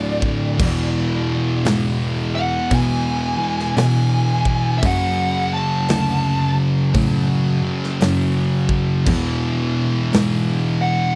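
A dry, close, 1970s-style studio sound frames this brooding, sludgy stretch of stoner and doom metal, cut from a longer piece and crawling at 57 BPM in 4/4 with swung eighths, tuned slightly flat to A4 = 438 Hz. Two dark, picked fuzz guitars sit in the background alongside a bright, double-tracked high-gain guitar, all grinding out the low riff over a D5, E, F#m, E progression, while a gently bowed cello with soft attack, airy sul tasto tone and light vibrato adds an overdriven bass line until 10.8 seconds. Up front, a big acoustic rock kit with a punchy kick, medium-tuned snare, hi-hat and bright crash cymbals enters at 0.2 seconds, and a compressed fuzz lead guitar with tape echo carries the melody above it all.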